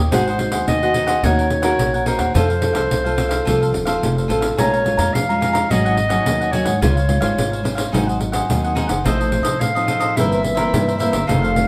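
The clear clarinet stands out, carrying a classical-style solo from 0.1 s across this lively, nostalgic samba and choro excerpt, moving in a narrow band between C5 and F5 at 107 BPM in straight 4/4. Behind it, the nylon-string guitar is fingerpicked with a warm, classical tone and audible finger squeak, while the cavaquinho adds bright, crisp picked accompaniment higher up. The upright bass is plucked pizzicato on steel strings, giving a woody low end that reaches down to Eb1. Up front, the pandeiro sounds jingly, compressed and saturated. The harmony moves through chords such as Ab7, Ebm7, Bbm7 and Dbmaj7 before settling on F7/A and C7/G, and the band plays live together in one room, wrapped in a wet studio reverb.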